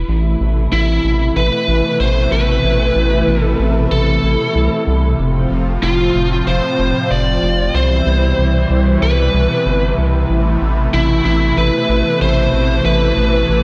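A dreamy mix soaked in moderate plate reverb gives this synthwave passage, cut from a longer piece, a nostalgic yet driving character at 94 BPM in a straight 4/4, set in A minor. A round, deep analog bass opens the track at 0.0 seconds, its dark, wave-folded tone with a fast attack sitting up front between F1 and C2. At 0.1 seconds a smooth, detuned sawtooth pad enters with sustained chords, softened by a gentle attack, a moving notch and a chorus effect. A biting, overdriven electric lead guitar carries the melody from 0.7 seconds, its picked line ranging from E4 to D5 and trailing a diffuse ambient delay. The harmony moves from Amadd9 to F, then Cmaj7, before returning to Amadd9, all within a single continuous section.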